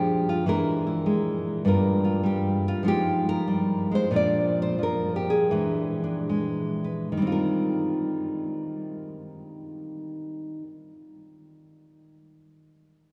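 A fingerpicked nylon-string guitar opens this short solo jazz excerpt, sounding full-bodied and fresh-stringed, with a deep classical character placed up front. The mood is warm and sophisticated, moving in 4/4 with a loose swing and a rubato feel somewhere between 70 and 101 BPM. The guitar ranges from G2 up to D5, moving through E7, Gm7, Fm7 and Bb before returning to E7, while the pace slows from 1.7 to 7.1 seconds. At 7.1 seconds a new section begins on an Eb69 chord. A wet cathedral reverb with a long 6.2-second decay surrounds the guitar, giving it the spacious sound of a church or concert hall.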